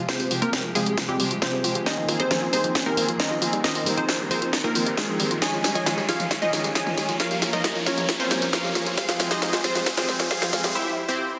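A straight 4/4 pulse drives this uplifting trance build-up, with a punchy electronic kick sitting in the background beneath an up-front techno kit whose cracking snare, hi-hats, tambourine and toms roll through a fill from the start to about 10.8 seconds. A lush, detuned unison pluck carries the soaring melody through a phaser and filter sweep, joined by a catchy plucky unison lead on a second line and a round, nasal analog pluck spinning arpeggios. All three synths pump against the sidechain and echo through digital delay, while a dark, reedy string section sustains chords from a distance and a riser enters from 1.6 seconds, all bathed in a lush hall reverb and a dense, heavily limited master.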